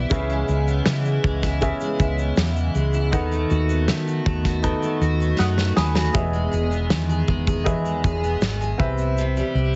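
A picked steel-string acoustic guitar, double-tracked and full-bodied, opens this sunny, easy-going acoustic pop excerpt in E major at 80 BPM, joined from the start by a woody upright piano with long sustain and a round, dark hollow-body electric bass played with the fingers. A loose indie drum kit with a fat snare, punchy kick and shaker sits up front. The piano adds a fill at 5.0 seconds and the drums follow with one at 5.4 seconds as the chords move from C#m7 through B7/D# to Emaj7 and a closing Cmaj7. The sound is heavily compressed and dulled at the top like a radio broadcast, set in a moderate studio reverb.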